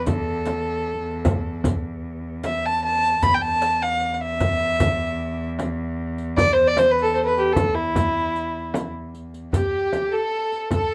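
Hypnotic and melancholic, this fragment of a Persian modal ensemble piece in straight 4/4 puts a dark, nasal, woody bowed fiddle melody up front over a warm cello drone that holds until 9.6 seconds, joined by soft-handed frame drum, a deep tombak in the background and a close, dry riq with bright jingles, before a smooth symphonic violin section enters behind at 9.5 seconds with an even second line, the ensemble sitting in a moderate small-room reverb.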